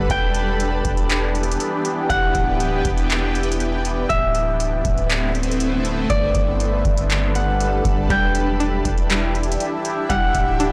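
A blown-out, overdriven sound with light reverb frames this hazy, spacious cut from a longer atmospheric cloud-rap track, set in E minor at 120 BPM with a half-time feel. A shimmering, ethereal ambient pad sits up front, holding sustained chords through Em9, Dsus2 and Gadd9 with chorus, phaser, built-in reverb and sidechain pumping. A ringing Celtic harp carries the melody through a digital delay, while a soft, round 808-style bass sits deep underneath. From 0.1 seconds a booming analog drum machine adds a deep kick, metallic hi-hats and handclaps, re-recorded in a large room for a tape-warm character. At 8.1 seconds, as the chords return to Em9, a twangy, string-like resonator pluck enters in the background with arpeggios treated with chorus and digital delay.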